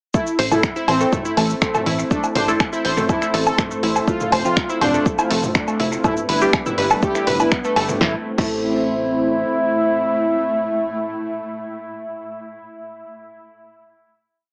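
A bold, nasal analog synth brass riff rides up front over a four-on-the-floor kick, punchy drum-machine snare, open hats, shaker, snaps and woodblock, with a funky, detuned plucky bass, a bright 16-step analog pluck arpeggio and muted dub chord stabs echoing in the background, all pumping against the kick in this melancholic, dramatic melodic techno piece at 122 BPM in A minor. A dark, moody pad holds chords underneath, and from 2.2 s a very quiet, swarming granular drone creeps in, while the chords move from Am through F and G. Shortly after the final Am chord arrives at 8.0 s, the drums and pluck drop away, followed by the bass, leaving the brass, pad, stabs and drone to ring out through spring reverb and heavy dub echo, with a small-speaker sound.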